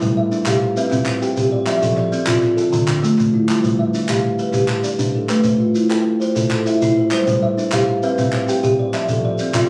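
Two thumb-plucked kalimbas open together in a rippling, hypnotic mbira-style interlocking cycle: one woody and ringing, placed up front with a boxy small-room character, the other short and airy, both weaving arpeggios from D3 to G5 over a grainy, band-limited shekere. Crisp, human group handclaps join at 0.5 seconds in this southern African traditional groove in 12/8 at 132 BPM (dotted quarters) with a straight feel, in G mixolydian, as the chords cycle through G, C, F, Dm and Am. Cut from a longer piece, it has the sound of a phone recording in the room, with a moderate club-like reverb.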